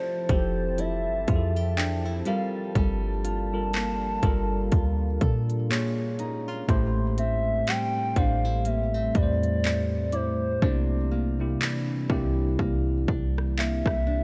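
A gliding portamento lead carries the melody with a smooth, detuned tone, vibrato and chorus, over a bell-like tine electric piano, fingerpicked nylon-string guitar arpeggios and a deep, dark ambient pad held in the background. This moody, late-night contemporary R&B excerpt rides a swung trap kit of hard-clipped kick, crisp hi-hats, handclaps and rim clicks alongside a boomy, clean sine 808 bass that enters at 0.3 seconds. A delicate celesta rings through digital delay until 11.1 seconds, the hi-hats drop out at 10.6 seconds, and the whole mix carries the worn, warbling pitch drift of old cassette tape.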